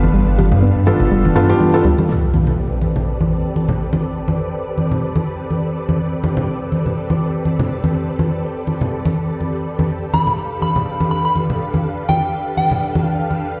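A deep, round analog bass with a touch of tube saturation sits up front at the very start of this moody, hypnotic deep house excerpt, playing only through the opening moments. Beside it, a felt-muted upright piano plays intimate stabs with audible action noise, shaped by a filter sweep and tape echo. A soft, dark pluck weaves arpeggios in the background. At 2.1 seconds an electronic impact lands as the harmony settles into a long stretch. Bright, low-tuned congas played with soft hands carry the swung groove throughout, while a silky, warbling string machine holds sustained chords beneath them. At 10.1 seconds a pure FM bell melody enters with chorus and delay, all set in a large, reverberant studio space.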